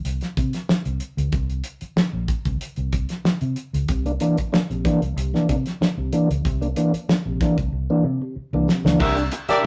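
A rough rehearsal-room sound with tube saturation and a moderate studio reverb frames this short, playful funk cut, moving at 94 BPM in a straight 4/4 around C mixolydian on a C9 chord. A vintage fingered electric bass, foam-muted, round and amped, anchors the groove from the start alongside a damped 70s drum kit with a fat snare, tight kick and dark, rolled-off cymbals. At 3.9 seconds a mellow tonewheel organ enters with clean stabs, coloured by chorus vibrato and a slow rotary speaker. A drum fill from 7.7 to 9.0 seconds closes the opening section, after which a scooped, picked electric guitar at the edge of break-up takes up the accompaniment. A tight, smooth-topped horn section in octave doubling adds a brief second line just before the energetic passage cuts off.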